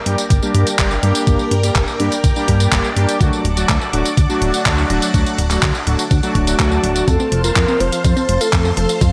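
Nostalgic and bittersweet, this italo disco passage, cut from a longer piece, sets lush, mellow string-machine chords with ensemble chorus over a glossy, dark chorused synth bass, a thumpy, tape-warm electronic kick and a sampler-style drum machine of handclaps, hi-hat and tambourine in gated reverb, while bold, brassy synth stabs with tape echo ride up front until 7.0 seconds, when a thick, detuned unison lead with vibrato and punchy plucked arpeggios enter at 7.1 seconds as the chords move from G minor through D to F.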